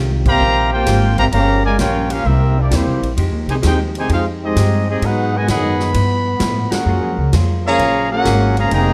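A swung 4/4 pulse drives this energetic big band swing clip, cut from a longer piece, as woody pizzicato upright bass and a clean, picked hollow-body guitar tucked in the background open it, joined at 0.3 s by a punchy, natural drum kit of kick, snare, hi-hat, ride and crash, an up-front mellow trumpet section carrying the melody with light vibrato and a smooth top, and a warm trombone section on the second line, with band accents at 0.2 s and 6.6 s over jazz chord changes in light reverb.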